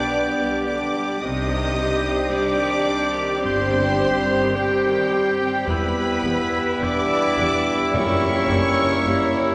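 A long, wet cathedral reverb bathes this yearning, elegiac classical excerpt, taken slowly at 54 BPM in a rubato 4/4, where a lush, focused symphonic violin section carries the melody high above a distant studio violin section, an airy flute, a roomy oboe, a very quiet clarinet and a vintage-toned bassoon. Dark, soft-attack French horns and tight trombones hold sustained chords while present trumpets add stabs and a faint viola section fills the middle, with cellos and double basses entering at 1.2 s to deepen the bass. The harmony moves from G through C minor and E minor to a tense F#7b9 at 7.9 s, where dry, articulate timpani struck with hard mallets join in the background.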